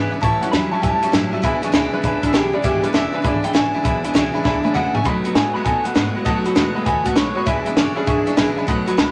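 A rollicking, rowdy rockabilly excerpt swings in 4/4, moving through A7, E7, B7 and back to E7. A picked electric guitar through a small old amp carries the melody with a twangy, slightly broken-up tone, while a second amped electric guitar sits in the background playing a low, brighter riff. A full-bodied dreadnought acoustic guitar is picked along with audible finger squeak. A brilliant upright piano adds high, short-sustain accompaniment with intimate action noise. Behind them a pizzicato upright bass gives a thumpy, woody gut-string pulse. A compact cocktail kit joins at 0.2 seconds, sitting up front in a small room with a high-tuned snare and punchy kick under a dark, rolled-off top, and throws in a fill from 4.5 to 5.1 seconds, all under light reverb.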